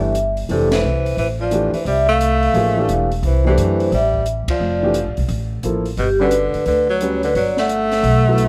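A soft-mallet vibraphone carries the melody with a ringing, airy tone and slow motor vibrato. A clear, close-miked tenor saxophone with vibrato adds a second line, while a concert grand piano with a deep bass provides the accompaniment in this spiritual, hypnotic modal jazz passage cut from a longer piece. A woody pizzicato upright bass sits up front, a quieter open drum kit with dark cymbals, high-tuned snare and boomy kick swings along, and the band hits accents at 0.7 and 4.4 seconds before the harmony moves from Fmaj9 to Gmaj9 at 6.0 seconds under light reverb.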